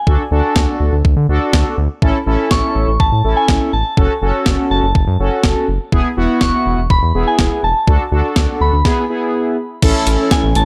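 A soft, pure synth bell opens this upbeat, bright synth-pop excerpt in A major at 123 BPM, its vintage FM tone warbling through chorus, phaser and analog delay. Almost at once, three parts join it: a fat, brassy analog synth brass with chorus and vibrato, a round, deep analog bass, and a clean 12-bit drum machine. The drums bring a thumpy kick, medium-tuned snare, hi-hat and crash cymbal, sitting up front with a sampler-style character. The harmony moves through D, A, F#m and E before returning to D, and a stop from 8.9 to 9.8 seconds leads to a landing on A. At 10.0 seconds a silky, mellow string machine enters in the background, colored by phaser and ensemble chorus, while the dry, gritty sound and little reverb give the straight 4/4 groove a close, hardware feel.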